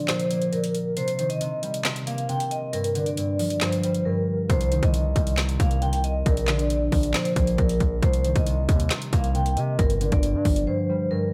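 Eerie and hard-hitting, this half-time trap excerpt in C minor moves at 136 BPM over Cm7, Gm7 and Bb chords, with a ringing vibraphone melody played with medium mallets and a fast motor vibrato above an acoustic, thumb-plucked concert harp, both softened by a low-pass filter. An electronic trap kit sits up front with a hard-clipped kick, woody snare, handclaps and metallic hats, falling silent briefly at 4.1 seconds. At 4.5 seconds a heavy, saturated 808-style bass enters with a fast-attack sine tone, a noise layer and aggressive distortion, all set in a light reverb.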